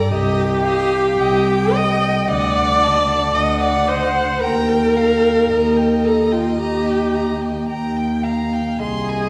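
The rhythm moves at a slow 56 BPM in 4/4, stretched by a rubato feel, in this brief portion cut from a longer slow romantic movement for string quartet. The mood is elegiac and yearning, with harmonies passing from Cm through D and Eb before settling on Ab/C near 8.8 seconds. A dark, close violin carries the melody with soft attacks, vibrato and expressive portamento, while a second violin, focused and smooth-topped, traces a line above it. The woody viola sits up front with its accompaniment, and the dark cello, entering at 0.1 seconds, anchors the bass with vibrato and its own sliding portamento. All four bowed players sound as single voices, heard from further back in a recital hall whose wet reverb, RT60 1.5 s, lends the ensemble a lingering, mournful glow.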